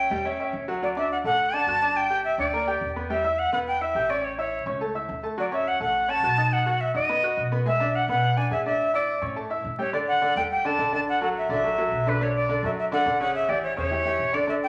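Flute, piano and upright bass enter together at the start of this festive, danceable salsa excerpt, set against a bed of vinyl crackle and the wet sheen of a large studio reverb. The tempo is a brisk 211 BPM in a straight 4/4. Up front, a metal jazz flute carries the melody with an airy, lifted tone, gentle vibrato and a soft attack. Close beside it, an upright piano with a brilliant, polished, woody sound and short sustain supplies the accompaniment, moving through chords such as D, Gm6, Em and Dmaj7 before settling on A7sus4, Dadd9/A and Bm9. Beneath them, a pizzicato upright bass with gut strings gives a dark, thumpy low end. At 9.9 seconds the music moves into a new section, and it closes on an A7 chord at 13.3 seconds before the cut at 14.7 seconds.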